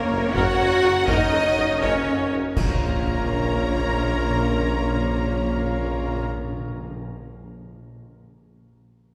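Cinematic, epic orchestral film score in a dramatic, relentless 6/8, where lush, vibrato-laden violin sections carry a distant melody and an intense second line over smooth violas, background cellos, expressive double basses, a clear tuba, very quiet mellow French horns and a thick romantic pipe organ, while background taiko with heavy sticks drive from 0.4 seconds and a full-band accent at 2.6 seconds brings dark clash cymbals with concert bass drum and round soft-mallet timpani, all washed in the long, wet reverb of a church.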